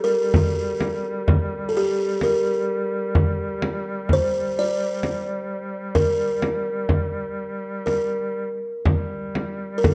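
Caucasian folk lament in G harmonic minor, unhurried at 63 BPM in a rubato 3/4 with uneven beats, where a buzzing, woody kalimba carries a mournful, longing melody with mellow fingertip plucks that ring up front in a boxy small room, over a distant, roomy duduk drone on G3 with vibrato and scooped notes, while a close, soft-handed frame drum enters at 0.3 s, all within a dark production with light reverb in this cut from a longer piece.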